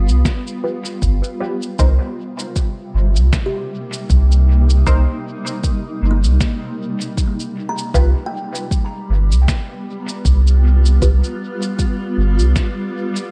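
A swung 78 BPM groove in 4/4 drives this ambient dub piece in C minor, with a tape-warm electronic kick and a muffled, pitched-down shaker and fat snare trailing dub echo, while a round, up-front sub bass anchors the low end. A blurred, detuned granular cloud pad holds sustained chords in its own reverb, a woody, hollow kalimba plays plucked arpeggios through tape echo, and a dark, filtered chord stab with phaser, analog chorus and dub echo opens with a filter sweep over the first 1.8 seconds. The harmony moves from G7 to Cm7 at 1.8 seconds and back to G7 at 7.9 seconds, giving a deep, spacious mood in a light digital ambience.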